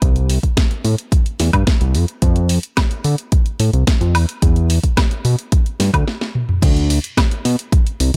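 This nu-disco excerpt moves at 109 BPM in a straight 4/4 with a sensual, groovy mood. A fat analog bass sits up front, its thick, detuned sawtooth tone saturated, with a fast attack and sustained notes ranging from C2 to D3. Beside it, a punchy electronic kick drum, layered and tape-warmed, was re-recorded in a large room and also sits up front. A house drum kit, placed lower in the mix, adds a cracking snare, hi-hat, crash cymbal, toms and woodblock, carrying the same produced, large-room character. At 6.1 seconds the groove stops for a drum fill, and the drop lands at 6.6 seconds, with the kick dropping out at 7.8 seconds. The overall sound is dry, with little reverb.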